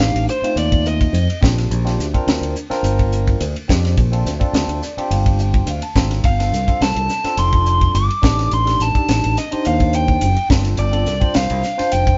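Electric jazz fusion at 106 BPM in 4/4 with a light sixteenth-note swing, intense and nocturnal, where a biting, overdriven picked lead guitar states the melody up front, drops out at 1.4 seconds and returns at 6.3 seconds, while a barky, clean tine electric piano played through a combo amp with phaser comps throughout over chords such as F13/A, Bb69 and G9sus4 and takes a fill from 4.5 seconds, a growly, direct-and-amped fingered electric bass and a tight, dry funk kit with a high-tuned snare, hi-hat and ride drive the groove, and the band sounds live in one room with wet studio reverb on this short cut from a longer piece.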